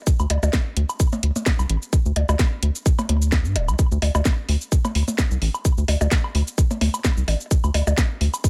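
Quirky and hypnotic, this minimal techno fragment runs at 129 BPM in 4/4 with a 55% swing on the sixteenths. An up-front, tight electronic kick and a garage drum kit of cracking snare, hats and shaker drive the groove. A rubbery, hollow square-wave bass with a filter pluck and sidechain pumping bounces darkly between D1 and G2, while tape-warmed woodblock and percussion blips with delay sit further back in a dry mix.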